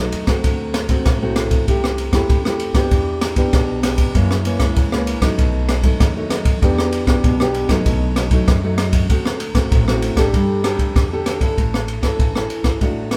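Sunny and playful, this short cut from a longer samba and choro piece moves at 97 BPM in E minor. An up-front, fingerpicked nylon-string guitar in a classical style, its finger squeak audible, sits over a woody, growly pizzicato upright bass in the background and a small-room open jazz drum kit with a boomy kick, dark ride cymbal and rim click, the band playing live together in one room with light reverb as the chords pass through D7, Em7, F#7 and B7 before turning to Gsus2 at 10.3 seconds and then A.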